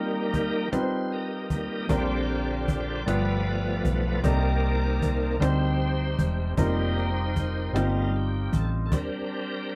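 Slow gospel in 6/8, uplifting and jubilant, with a bright, shouting tonewheel organ leading throughout on sustained chords, lightly overdriven through a fast rotary speaker with chorus vibrato. A clear, woody upright piano accompanies up front, a snappy, close cajon played with soft hands keeps time, and a round, punchy hollow-body electric bass joins at 1.9 seconds. The band plays together in one room with moderate reverb over chords moving from F9sus4 through Bb69, G7 and Cm9. Piano and bass stop at 8.9 seconds and the cajon by 9.1, and the organ then rings on alone in this excerpt from a longer piece.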